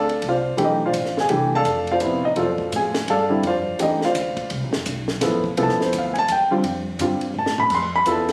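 Captured on a phone in a club-like room with moderate reverb and compression, this brief excerpt of open, spiritual modal jazz swings in 3/4 at 169 BPM in F lydian over an F6 chord, with an up-front baby grand piano of short sustain carrying the accompaniment, a woody pizzicato upright bass on steel strings beneath it, and a dry compact cocktail kit of dark cymbals, high-tuned snare and punchy kick that plays a fill from 7.3 to 7.7 seconds.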